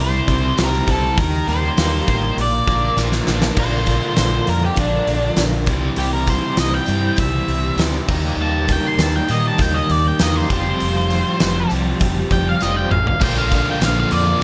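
A dark octave-fuzz lead guitar with analog delay carries the melody and takes a solo from 3.6 s in this swaggering, sunny classic rock cut at 100 BPM, riding over a huge, up-front arena drum kit with a fat snare, a punchy kick and a couple of fills, an amped overdriven fingered bass, crunchy picked and bright tremolo-treated semi-hollow guitars playing riffs in the background, a jingly tambourine, very quiet, mellow string-machine cellos holding sustained chords, and a tight, double-tracked distorted guitar that joins at 13.2 s, set in a light reverb.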